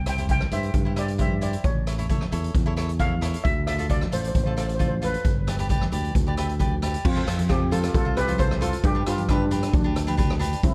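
A straight, bouncy calypso groove in 4/4 drives this short fragment of a longer piece, with a street-band drum kit of boomy kick, hi-hat, rim click and crash cymbal sitting roomy and up front. Very quiet congas with a thin, medium-tuned skin, played with soft hands, sit far back in a large room. A punchy, direct fingered electric bass anchors the low end. A crisp, picked acoustic cavaquinho provides the accompaniment and plays a short fill from 6.2 seconds, just before the second section opens at 7.0 seconds. Over this, a shimmering, metallic lead steel pan, played with medium rubber sticks and carried on plate reverb and tape echo, sings a carefree melody through the chords C, A, Dm and G, then F and G, all within a dark, warm production with light reverb.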